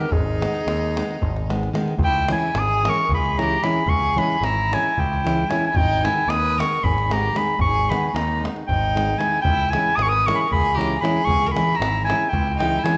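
This Balkan folk excerpt has the fiery, bittersweet drive of a wedding band in 7/8, and it speeds up over its 13 seconds. A warm, smooth-topped clarinet carries the melody up front in a classical solo style. Beneath it, a single clear, nasal and earthy violin plays a bowed second line with light vibrato and an airy bow, while a bright, small-sounding nylon-string guitar fingerpicks the accompaniment. A tight davul recorded in a small room handles the percussion, and a growling picked electric bass, overdriven and punchy, enters at 0.1 s and stops at 12.8 s. The harmony moves between G#m and C#m, all set in a wet recital-hall reverb.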